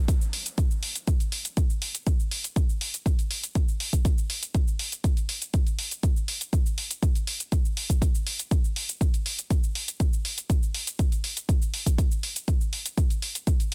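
Bittersweet and emotional, this house excerpt at 121 BPM in a straight 4/4 runs on drums alone, with a deep, tape-warm electronic kick and a layered, overdriven electronic hi-hat and cabasa both sitting up front from 0.1 seconds to the end. The sound is dry and close, with a dense, heavily limited modern master that keeps the short cut from a longer piece tight and forceful.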